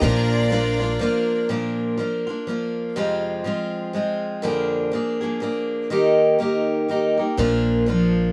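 A picked steel-string acoustic guitar sits up front with an auditorium-sized body, carrying this pastoral, hopeful folk piece in a swung three-beat lilt as the harmony moves from Bb through Fm and Eb and back to Bb. A clear chamber string section holds bowed chords with light vibrato and a biting, earthy edge for the opening 1.5 seconds, while a woody, growly pizzicato upright bass plays at the start and again from 7.4 seconds. A rich, reedy cello with a gut-string tone joins up front at 7.9 seconds, all heard in a lightly reverberant room that sounds like a band playing live together.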